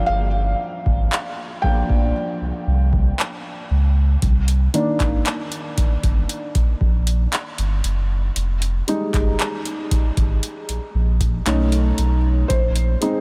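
Contemporary R&B in C minor at a slow 58 BPM, sensual and longing, where a soft, intimate felt-muted upright piano with analog chorus carries the lead over Gm7, rootless Cm7 and Fm7 chords, joined from the start by a round, sine-like sub bass, while a booming analog drum machine with a deep kick, metallic hi-hats and handclaps enters at 0.9 seconds, all set in light reverb in this short cut from a longer piece.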